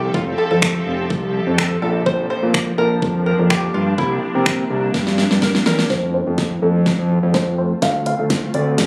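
A twangy, fingerpicked open-back banjo carries the melody in this carefree, upbeat dance-pop excerpt, its plunky, percussive tone softened by a low-pass filter and trailed by tape echo. A fat analog bass sits up front with a thick, nasal, detuned sawtooth-and-square voice, saturated and pumping to the sidechain. Alongside it, an electronic, produced R&B drum kit, re-recorded in a small room, pairs a knocking kick and snare with warm hats and finger snaps. In the background, a dark, mellow concert grand piano and a cloudy, blurred granular pad with a slow attack and built-in reverb both pump to the sidechain as the harmony moves from Fmaj7 through Bbmaj7 to C7. A drum fill from 4.9 s leads into a new section at 5.9 s, where a build-up and filter sweep drive through F and Dm7 with further fills. The sound carries light reverb and digital ambience, captured on a phone in the room with a studio ambience.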